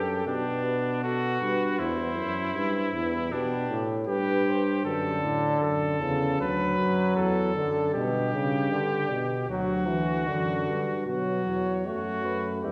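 This joyful, elegant classical canzona for brass ensemble, a fragment of a longer piece, opens with a brilliant, lightly vibratoed trumpet up front on the second line, a present cornet melody set in the background, and a distant, roomy bass trombone anchoring the low end. A warm trombone enters at 4.9 seconds with up-front accompaniment, and the cornet, silent after 4.8 seconds, returns at 11.1 seconds for the closing passage. The ensemble sounds in a reverberant church or concert hall.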